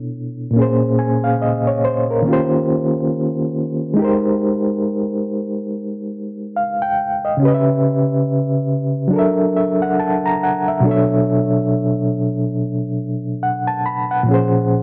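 Hip hop with a hazy, nostalgic mood, this short cut from a longer piece features a lone overdriven reed electric piano playing solo from 0.0 to 14.8 seconds. The piano sits up front with a reedy, gritty tone pushed through a combo amp, carrying a fast tremolo and a low-pass filter that softens its top end. Its range spans from A#2 up to B5, and the 16th-note swing gives the progression a relaxed sway. The harmony drifts through rich extended chords such as Bm11, A#m9, D#13 and G#maj7, then darkens with C#m7b5 and F#7alt before the opening Bm11 returns at 10.8 seconds. Recorded at home on cassette in a moderate studio ambience, the piano carries a worn tape character that deepens its faded, wistful feel.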